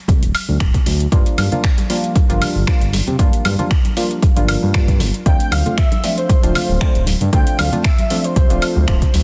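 A dense, heavily limited modern mix with digital ambience frames this moody, late-night deep house cut from a longer piece, moving at 116 BPM in D minor with a 54% swing on the 16ths. An overdriven, up-front electronic kick and a layered kit of finger snaps, metallic hi-hats and woodblock drive it from the start, with a smooth sawtooth-and-triangle synth bass pumping against the kick and soft-handed congas sitting in the background. A deep, mellow chord stab with 12-bit sampler grit, chorus and tape echo enters at 1.1 seconds on Gm7, and a breathy, flute-like synth lead with tremolo and cassette-tape character joins at 5.3 seconds as the harmony turns to Dm7.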